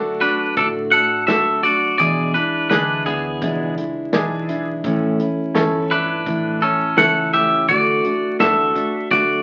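Easygoing and sunny, this honky-tonk and classic country excerpt ambles along at 84 BPM in D major, moving from D through E7 and A back to D. Up front, a clean, compressed, twangy electric guitar carries the melody over a dark, full-bodied picked dreadnought acoustic guitar with audible finger squeak, a brilliant, present upright piano with long sustain, a woody, thumpy pizzicato upright bass in the background, and a natural country drum kit with a punchy kick and medium-tuned snare that closes on a fill at 9.1 seconds. The whole thing sits in a wet small room and sounds like a very old 78 rpm record, with vinyl crackle and a muffled top end.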